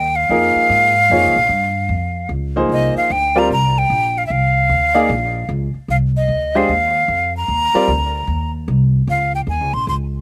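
Jazz in C minor at 150 BPM with a swung feel, this short excerpt cut from a longer piece carries a spiritual, hypnotic mood over Bbm11 and Cm11 chords. A breathy, bright flute leads the melody up front with vibrato and a crisp chiff, while a woody, thumpy pizzicato upright bass on gut strings anchors the low end throughout. A brilliant, vintage-toned upright piano enters at 0.3 seconds and drops out at 7.9 seconds, all captured outdoors with little reverb and a dry presence.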